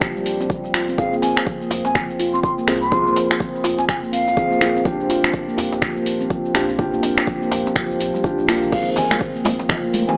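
This driving, warm afro house excerpt opens with a ringing handpan playing arpeggios alongside soft, felt-muted upright piano stabs with audible action noise, both pumping against the kick and trailed by tape echo, over a round sine sub bass tinged with tube saturation sitting deep in the background. An up-front, tape-warm deep house kit of hi-hat, shaker, finger snaps and crash cymbal drives the 124 BPM groove with a 16th-note swing, layered with a deep electronic kick, while a close, dry djembe played with soft hands joins at 0.4 seconds. At 1.0 seconds a bright, reedy bansuri enters with a pure, straight-toned, tongued melody high in its range, drifting through tape echo before pausing and returning at 8.7 seconds. That same moment brings in hard-handed congas set back in a small room. The harmony in F dorian moves between Ebmaj7 and Fm, and the whole excerpt carries a gritty, hardware-driven AM radio character with light reverb.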